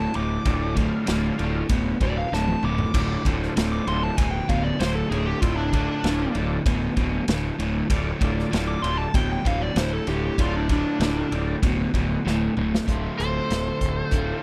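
A dark, smooth overdriven lead guitar solos through most of this brooding, heavy blues rock and southern rock piece in D minor at 97 BPM, carried by a double-tracked crunchy riff guitar, a growly fuzz bass on D1 and a vintage drum kit with a tight kick, dark cymbals and short fills, while a gritty tonewheel organ holds background chords on a slow rotary speaker until 11.6 seconds, before a bright slide guitar with slapback echo enters at 13.2 seconds for a brief melody, all in a close, dry 1970s-style studio sound.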